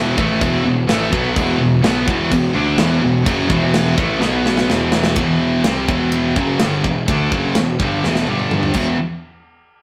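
Relentless and dark, this heavy metal excerpt is driven by two bright, scooped high-gain guitars playing a distorted, picked riff, one of them up front, while a double-tracked thick fuzz guitar sits in the background until it drops out at 5.2 s. A growly, overdriven fuzz bass rumbles low beneath them, and a tight acoustic kit with bright cymbals, a medium-tuned snare and a tight kick plays fills around 4.2 s and 8.0 s. The sound is rough and raw, like a rehearsal room, with a moderate stone-room reverb.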